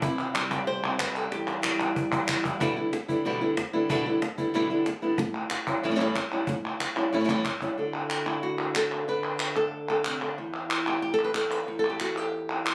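A fingerpicked flamenco guitar carries the melody of this intense, passionate flamenco excerpt, sounding warm and up front across a range from E2 to C5 at a driving 186 BPM in a straight 4/4. Beneath it, a snappy cajon with snares, played with hard hands in a small-room sound, adds a pair of fills before dropping out at 7.7 seconds. Crisp palmas hand claps join almost at once, pause at 2.6 seconds and return at 5.3 seconds to stay through the end. The harmony moves from C to Em, Em7 and A7, settling on D before the chords fall away in the closing seconds. Captured on a phone in the studio, the recording has moderate reverb, a sense of room ambience and noticeable compression.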